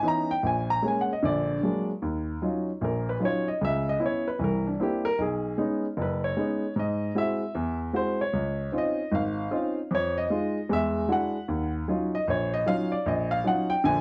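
Solo jazz in Eb minor at 152 BPM with a swinging, cool feel, this 14-second excerpt features a baby grand piano sounding natural and up front as it moves through rich extended chords like Ebm9, Ab7b13 and Dbmaj9, set in moderate studio reverb and colored by the worn, warbly pitch drift of old cassette tape.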